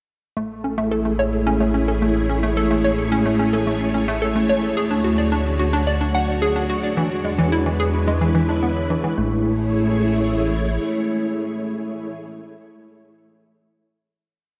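A straight 4/4 pulse at 109 BPM carries this brief, cosmic and luminous piece of sequencer-driven space music in A major, where a hollow, bouncy square-wave pluck with chorus and analog delay cycles a 12-step loop that drifts against the bar over lush, vintage string-machine chords with ensemble chorus moving from Amaj7 through Dmaj7 and E7, a fat, saturated analog bass holding the roots, and a very quiet, bubbling resonant texture sustaining a high C#5 from 3.7 to 9.2 s, before the pluck and texture fall away, leaving the strings and bass on a final Amaj7 chord; the bass drops out at 10.8 s while the strings ring on to 12.1 s in dark plate reverb.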